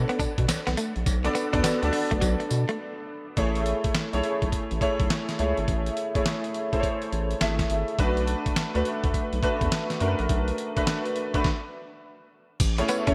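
A clear, intimate grand piano with audible action noise and ensemble chorus opens this punchy new jack swing excerpt at 104 BPM alongside a deep, round analog bass with a filter pluck, while a gritty, compressed sampler-style drum kit sits up front with a thumpy kick, fat snare, hi-hat, tambourine and crash in a swung 16th-note groove. A clean, direct-recorded electric guitar riff bathed in lush chorus plays until 2.8 s and returns briefly at the close, and a very quiet, distant metallic cowbell appears near the start. Moving between Bm7 and Amaj7, the confident track pauses for a break at 2.8 s and a stop at 11.4 s, set in a moderate hall reverb with bright 1980s-style digital production.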